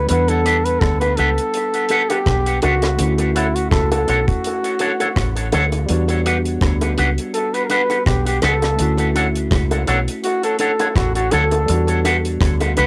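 Lovers rock reggae at 83 BPM with a swung sixteenth feel, sweet and romantic, with a smooth-topped flugelhorn taking a solo over a slow sway between Em9 and Dmaj7 in this short cut from a longer piece. A round, foam-muted fingered bass sits up front under a dry, tight drum kit of kick, hi-hat and rim click, while a barky, lightly overdriven tine electric piano plays the accompaniment. A dark, clean guitar through an envelope filter adds stabs from 0.4 seconds, very quiet high-tuned bongos join at 1.0 seconds, and tape echo on the horn and guitar plus a cassette haze give the light-reverb home recording its intimate character.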